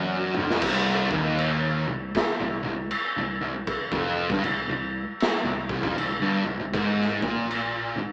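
A swung 78 BPM 4/4 groove in C minor opens on a drum fill that brings in a raw garage kit at 0.3 s, gritty and saturated with its punchy kick up front, driving this ominous, brooding stoner and doom metal excerpt cut from a longer piece, where a double-tracked, thick fuzz guitar riff looms over a round, dark hollow-body bass with overdrive in the background, moving from Cm to Ab5 at 6.7 s, all heard as a band playing live in one small room with a small-speaker sound.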